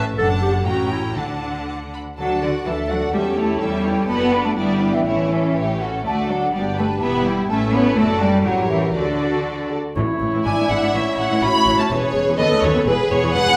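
Cheerful and graceful, this quick classical-period orchestral passage in 2/4 moves at 116-129 BPM with a rubato feel in D major, where a clear violin section carries the melody over a background clarinet, second violins, rich violas, a full-bodied cello section and double basses, joined at 2.2 s by an airy, distant flute ensemble and mellow French horns, before the music turns to A major at 10.0 s as a cor anglais and a brief hard-mallet timpani entry arrive, all set in a recital hall's reverb and cut from a longer piece.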